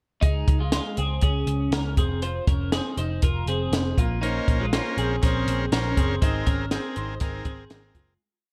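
A bright, twangy twelve-string electric guitar plays compressed, ringing arpeggios doubled in sixths through phaser and digital delay in this bittersweet, restless jangly indie pop piece at 120 BPM in Bb minor, over a round, foam-muted vintage picked bass driving eighth notes, a compact cocktail drum kit up front with a punchy kick, high-tuned snare and gated reverb on a brisk backbeat, and a buzzy combo organ with light vibrato adding close-voiced quarter-note chords from 4.2 seconds through the fade-out that begins at 6.2 seconds.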